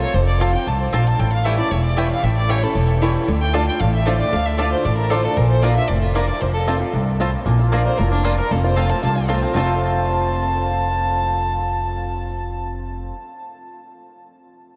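A brisk, straight 4/4 pulse at 230 BPM drives this lively, rustic bluegrass passage in F major, cut from a longer piece. The upright bass sits up front with a woody, pizzicato tone on steel strings, alongside an old ladder-braced acoustic guitar whose picked accompaniment sounds dark and boxy on old strings. A clear fiddle carries the melody from the start, bowed smoothly and evenly by one player with light vibrato until it stops at 12.4 seconds. A picked mandolin adds double-string stabs in the background from 0.4 seconds, and a mellow, twangy banjo played with fingerpicks joins the melody at 3.5 seconds, percussive but set back in the mix. The fiddle, mandolin and banjo trail a diffuse ambient delay, and the guitar carries a subtle chorus. The whole mix is soaked in a huge, dreamy reverb that blurs the rustic playing into a hazy wash.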